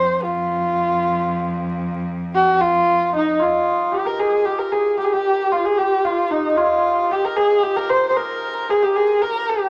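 Persian modal ensemble music in a stately three-beat metre, cut from a longer piece, where an up-front bowed kamancheh carries a woody melody with vibrato and portamento over a clear, intense cello drone that lasts until 3.5 s, while a shimmering hammered santur enters at 3.1 s with a ringing second line, heard in a moderate club reverb with vinyl crackle.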